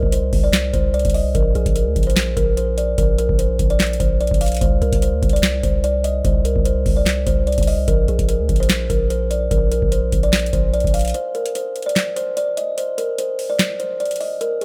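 A digital ambience frames this brooding, melancholic trap beat, a fragment cut from a longer hip hop piece with a half-time feel. A booming analog drum machine sits up front, its deep kick, crisp snare, metallic hats and handclaps running from start to finish. Beneath it, a long, sustained 808-style bass with a sine-like tone, fast attack and mellow decay holds the low end until 11.1 seconds, when it drops out for a closing break. Over the top, a woody, softly plucked kalimba carries the melody through a low-pass filter, its fingertip notes ringing close to the listener. The harmony alternates between a suspended C chord and stretches of bare, unharmonized melody, giving the passage an unresolved, shadowy air.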